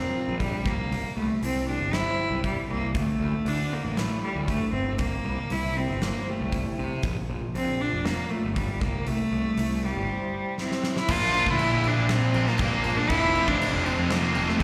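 Heard like a live gig through the venue's PA, with a recital-hall ambience, this dark, angsty stretch of quiet-loud alternative rock is cut from a longer piece and moves in a straight 4/4. A single bowed cello sits up front carrying the melody, its biting, nasal tone carrying light vibrato, an airy bow and a slapback echo. Behind it, an electric guitar through a small old amp plays twangy, slightly broken-up arpeggios with tremolo and slapback, while a round, fuzz-soaked picked bass growls underneath and a huge arena drum kit pumps the room with a fat snare, punchy kick, hi-hat and bright crash cymbals. A drum fill at 10.6 seconds launches the loud half at 11.1 seconds, where the arpeggiated guitar stops and two guitars take over the riff in the background: a cranked, overdriven stack with slapback echo and a compressed, distorted guitar. The harmony drifts through Bbadd9, C, Dsus2 and Bb before settling on Bb and F in the heavier closing bars.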